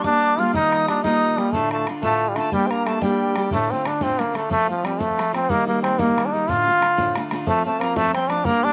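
Spirited and wild, this Celtic jig in 6/8 at 121 BPM features a brilliant, nasal straight-muted trombone up front carrying the melody with light vibrato, while a mellow, airy tin whistle adds a background second line that drops out at 3.5 seconds and returns at 7.5 seconds, a picked steel-string acoustic guitar with audible finger squeak provides accompaniment, and a tight, damped bodhran keeps the percussion, all touched by a slapback echo in a dry outdoor sound over a G minor progression through D minor, F and Eb.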